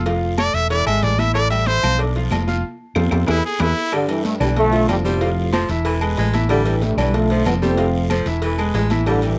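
A brilliant, vibrato-laden trumpet leads this driving, passionate salsa over a clear, intimate grand piano and a round, dark hollow-body electric bass, with bright congas, tight cowbell, ringing agogo bells and timbales, raspy guiro and woody claves in the background, until a band accent and drum fill hand the melody at 3.9 seconds to a tight, jazz-style trombone section joined by a punchy, forceful baritone saxophone, all in a dry, close 1970s-style studio sound.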